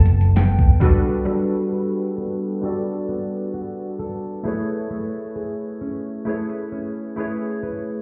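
Round, detuned analog keys with chorus and a thumb-plucked nylon-string guitar playing dark, full-bodied arpeggios through tape echo open this tender, smooth contemporary R&B fragment, joined briefly by a foam-muted electric bass note and a gritty, compressed sampler-style drum kit with a thumpy kick, before the keys carry a filter sweep from 1.3 seconds as the harmony shifts from Gmaj9 to Amaj9 at 4.5 seconds, the whole mix sounding muffled as if through a wall in club reverb.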